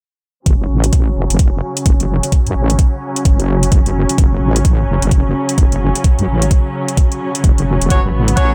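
Bass house at 129 BPM in F# minor, swaggering and gritty, with a 16th-note swing and a dry, close sound in this short cut from a longer piece. A knocking, up-front electronic kick and metallic hi-hats sit alongside a heavy, saturated wobble bass built from detuned sawtooth and sine tones with chorus and sidechain pumping. Veiled, con sordino strings hold lush bowed chords under a filter sweep, and bright jazz-style horn stabs with light vibrato and dub echo cut in at 7.9 seconds.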